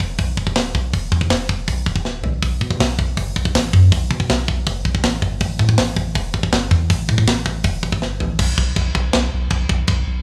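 Dark and heavy, this cut from a longer heavy metal piece pairs a tight acoustic drum kit, up front with a medium-tuned snare, tight kick and rolled-off top working china, crash, hi-hat and toms, against a deep, smooth sine sub bass spanning D1 to B2, with drum fills at 2.1 and 8.0 seconds before the groove drops into half time at 8.4 seconds, all in a rough home-demo mix with small-room ambience and little reverb.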